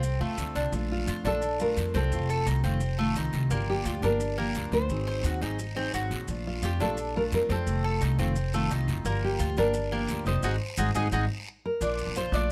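Relaxed and warm, this Cuban son and guajira excerpt sets a dark, full-bodied nylon-string guitar melody with audible finger squeak over picked steel-string acoustic guitar accompaniment and metallic, double-strung tres arpeggios placed up front. A woody, bright pizzicato upright bass anchors the cycling Bbmaj7, F7, Gm7 and Ab7 changes, while a raspy guiro sits close and dry and grainy maracas stay further back. The close, detailed recording is dry, and the band lands a shared accent from 10.4 to 11.8 seconds.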